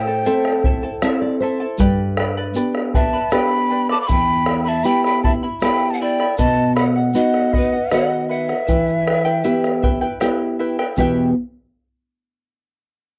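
A breathy wooden quena leads this earthy, festive Andean folk cut, carrying the melody over a hollow bamboo pan flute on a second line. Beneath them, a shimmering charango and a thumb-plucked nylon-string guitar, sitting up front, share the accompaniment, and the guitar slips in a brief fill near the start. A deep, dark bombo and a grainy egg shaker join at 0.3 seconds, the drum sounding distant, as if in a large room, while the shaker stays near and bright. The music moves in a straight triple time through Am, G, Em and B before returning to Em, with the quena's vibrato and soft attack set against the crisp chiff of the pan flute. Both winds fall away at 10.2 seconds, leaving charango, guitar, bombo and shaker to play on briefly in a dry, close studio sound with a 1970s character.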